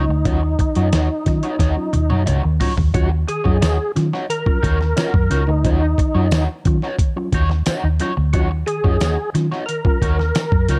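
Funk at 89 BPM in 4/4 with a straight feel, this short cut from a longer piece sits in Eb minor on an Ebm7 chord and carries a driving, cool mood. A percussive tonewheel organ takes the melody between Eb4 and Bb4, lightly overdriven, with key click, third harmonic percussion, chorus vibrato and a slow rotary speaker. Up front, a foam-muted fingered electric bass sounds round and amped. Behind it, a crunchy, picked electric guitar with wah plays bright accompaniment, and a mellow tine electric piano adds clean stabs in the background through its built-in speakers. The sampler-style drum kit enters at 0.3 seconds, gritty and compressed, with a thumpy kick, fat snare, hi-hat and toms, and a drum fill from 1.6 to 2.9 seconds leads into the next section. A jingly tambourine joins in the background at 3.6 seconds, all within a dark, warm production of digital ambience.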